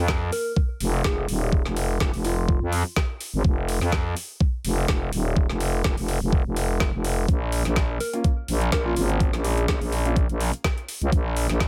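Bouncy and aggressive, this swung bass house excerpt rides a growling, thick FM bass pumping against an overdriven, knocking electronic kick and a garage kit of woody snare and metallic hats, while a round, warbling synth lead with chorus and delay drifts in at 0.3 seconds and returns at 8.0 seconds alongside boxy, dark grand piano stabs as the harmony settles on Bbm in a dry, close mix.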